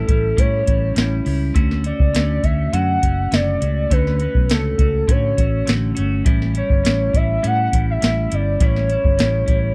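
Indie bedroom pop at 102 BPM in D major, this dreamy, nostalgic fragment from a longer piece sets a warbling lead melody with subtle chorus, tape echo and gliding portamento over a bright, twangy clean electric guitar drenched in lush chorus and vibrato, a round, punchy foam-muted fingered bass, and a soft analog rhythm box with a deep kick, crisp snare and metallic hi-hats, all moving from A7 to Dmaj7 and back in a dry, close 1970s-style studio sound.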